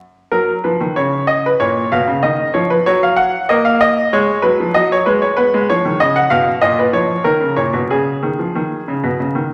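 A classical-period piano sonatina, elegant and cheerful in a straight 4/4, where a bright baby grand plays solo from 0.3 to 9.5 seconds with brilliant, up-front tone and short sustain, set in a wet recital hall reverb beneath a vinyl crackle, in a short passage cut from a longer piece.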